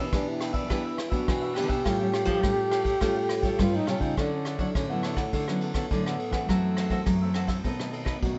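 A straight 4/4 samba and choro groove at 104 BPM in D major rides on a vintage brush drum kit, tight and up front with a rolled-off top, playing kick drum, ride cymbal and rim click from 0.1 seconds. Over it, a dark, close-miked trombone sings the jazz-style solo melody with vibrato and a soft attack, while a crisp picked cavaquinho and a dusky, thumb-plucked nylon-string guitar comp, and a second warm nylon-string guitar with fresh strings carries the bass line. The mood is playful and sunny, set in light reverb with a mellow, softened top end, as the chords move from Em7 and A7b13 to Dmaj9, F#m7b5 and B7b9 in this short cut from a longer piece.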